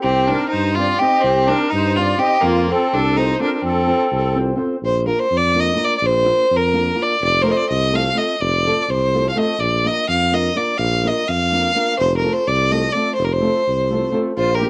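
A driving 5/8 pulse at 251 BPM in eighths drives this wild, virtuosic fragment of Balkan wedding-band folk in F mixolydian, moving through Cm and F before settling into a Bb–F alternation. Up front, a single clear, focused bowed fiddle with light vibrato carries the melody, while a dark, punchy tuba, also up front and tube-saturated, anchors the bass in a classical style, and a small, thumb-plucked nylon-string guitar with fresh strings joins at 0.3 seconds for accompaniment. A reedy, shimmering musette-tuned accordion plays the second line until 4.4 seconds and briefly returns at 14.4 seconds, with the fiddle, accordion and guitar all colored by cassette tape in a home recording with moderate studio reverb.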